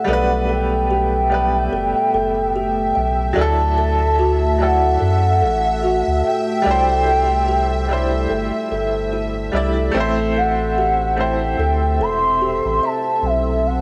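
Lightly reverberant and cassette-worn, this smoky, cinematic trip hop excerpt at 73 BPM in A dorian, with a swung 16th feel, sets a pure, breathy sine lead with lush chorus, 12-bit grit and tape echo over a brilliant, woody upright piano with tremolo, a moody detuned pad in the background, a delicate tinkling music box, a tense, nasal string-like drone held on E5, and a round, up-front dub sub bass entering at 0.1 seconds, as the chords move through G/B, Dadd9, Cadd9 and Am.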